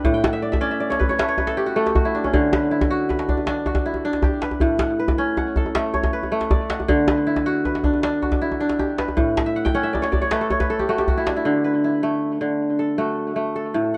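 West African traditional music in a flowing 12/8, with a crisp, ringing, fingerpicked kora up front spinning arpeggios through tape echo and adding fills near the start and again from 9.5 seconds, over tight, cracking djembe played with soft hands in a small room until 11.4 seconds, after which the kora carries on alone into a new section within a light reverb.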